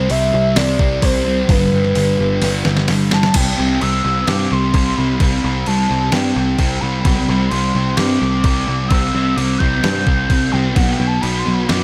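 A straight 4/4 pulse at 129 BPM drives this blissful, dreamy shoegaze and dream pop excerpt in C lydian, where a double-tracked, compressed fuzz guitar riff, a growly foam-muted picked bass, and a breathy, warbling sine lead with chorus and tape echo gliding high open together, with a clean 12-bit drum machine with a thumpy kick and fat snare entering up front at 0.1 s and playing a fill from 2.4 to 3.3 s, over chords that move from C and G to Csus2 and finally Bm, in a mix soaked in moderate plate reverb.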